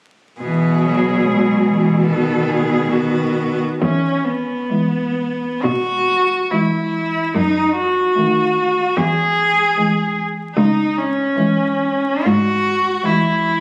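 Four bowed cellos enter together at 0.4 s in a serene, lyrical classical passage with rubato phrasing, each a single player with vibrato. Up front, a rich, focused cello carries the melody over a close second line, a distant, even cello accompaniment and an intense, clear bass part that drops out at 12.9 s, shortly before the others finish at 13.6 s. The harmony moves into a second section from 3.8 s, and the sound, cut from a longer piece, carries moderate stage reverb, the ambience of a studio captured on a phone, and vinyl crackle.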